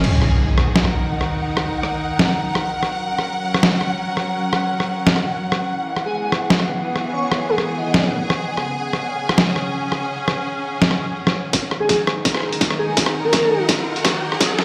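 Wet and cavernous, this dark, heavy half-time drum and bass passage sounds as if played on a big system in a bare room, its digital echo-chamber ambience lending a long, reverberant tail. A gritty, pitched-down, tape-warm sampler-style kit sits up front with a compressed, medium-tuned snare, hi-hat, rim clicks and crash cymbal, while an electronic impact opens the cut. Beneath it, a clear, lush studio string section holds bowed, vibrato-laden chords that pump against the beat, moving from Ebm through Gb, E and Db5 before returning to Ebm. A grainy, flickering granular texture hovers in the background from 0.6 seconds, and an airy, dreamy lead with a soft, mellow tone, chorus, delay and gliding portamento drifts in at 6.1 seconds. At 11.5 seconds a tight, layered electronic kick joins for a build-up and drum fill as a riser climbs to the end of this fragment of a longer piece.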